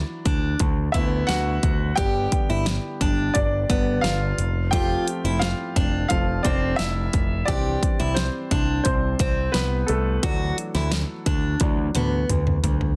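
Dense, heavily limited and lightly reverberant, this anthemic piano-driven pop excerpt at 87 BPM features a clear, polished baby grand playing solo over chords moving from Dadd9 through G, F and C, with an overdriven, up-front picked electric bass, a full-bodied picked steel-string acoustic guitar riff entering at 0.3 seconds, and a punchy, layered pop drum kit with a fat snare that closes on a fill from 11.6 seconds.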